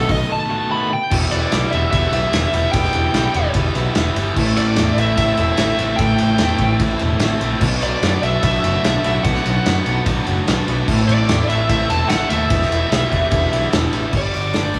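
Moody and bittersweet, this indie rock excerpt moves at 148 BPM in a straight 4/4, centered on E minor. A bluesy, distorted lead guitar carries the melody throughout, opening with a brief solo over a break before the full band settles into a progression that moves from Em through Am and Bm, ending on Em7 and Gmaj7. Two overdriven rhythm guitars play riffs in the background, one with a warm tone and the other raw and bright. Beneath them, a growling picked bass with overdrive anchors the low end. A loose acoustic drum kit sits up front with a punchy kick, a medium-tuned snare and dark cymbals, and it enters at 0.1 seconds. A very quiet, silky string machine holds sustained chords with a slow attack and ensemble chorus until 14.1 seconds, and the whole band sounds as if it were playing live together in one room, bathed in a lush large-studio reverb.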